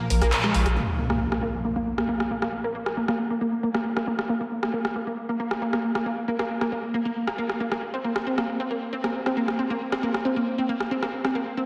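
A straight 4/4 pulse at 136 BPM drives this dark, peak-time techno cut, taken from a longer piece, with an electronic, layered drum kit of handclaps, hi-hat and rim click sitting up front, its warm hats and filtered room tone re-recorded in a large space. In the opening moment a swarming, tense drone of detuned, ring-modulated sine and sawtooth tones murmurs in the background with its own reverb, while a deep, thick, saturated sub bass lands on Bb1 beneath a band accent at 0.3 seconds. Both drone and bass fall away at 0.8 seconds as an electronic impact hits and the harmony moves from a Bb5 to a Bbsus2. From there the lush, punchy unison pluck carries the track: a detuned sawtooth riff with a noise layer, short decay, subtle chorus and tape echo, placed up front and running under a long filter sweep through to the end. The whole mix is dreamy and soaked in a lush hall reverb, giving the driving groove a cavernous, brooding glow.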